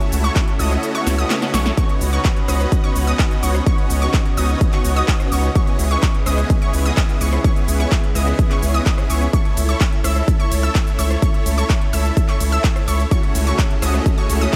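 Euphoric and powerful, this festival progressive house passage in C# minor drives at 127 BPM in a straight 4/4, moving through F#m7/C#, Badd9/C#, C#m7 and A/C#. A punchy, overdriven electronic kick sits up front beside a deep, thick sine sub bass with saturation and sidechain pumping. A big-room dance kit adds a crisp layer of hi-hat, snare, handclaps, ride, rim click and shaker, overdriven and carried by the ambience of a large room. Huge detuned supersaw chords with ensemble chorus lead the riff, while a lush square-and-saw pad sustains slow-attack chords beneath. A bright ring-modulated pluck spins high arpeggios through a filter sweep and diffuse delay, with the saws, pad and pluck all pumping to the sidechain. The kick drops out from 0.8 to 1.8 seconds, where a very quiet swell and a short drum fill lead back into the groove under light digital reverb.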